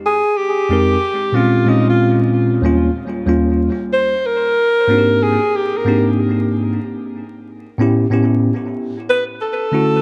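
A breathy, whispered alto saxophone opens this mellow, smoky hip hop fragment, taking an intimate, jazz-style solo with soft attacks, subtone and scooped notes over a swung groove. From 0.7 s a clean, bell-like tine electric piano joins up front, moving from Fm7 through Bbm9 and Eb7 to Abmaj9#11, A9 and Dmaj9. Tape echo on both parts and a spring reverb fill the echo-heavy mix, with vinyl crackle beneath.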